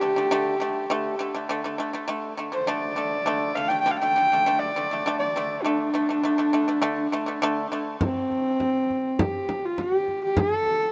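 Vast and windswept, this Mongolian folk excerpt at 101 BPM sets a husky, earthy horsehead fiddle melody with portamento over dry, percussive fingerpicked pipa arpeggios, until the pipa stops at 8.0 seconds and a deep, close frame drum struck with hard hands joins the fiddle, all bathed in a huge ambient reverb.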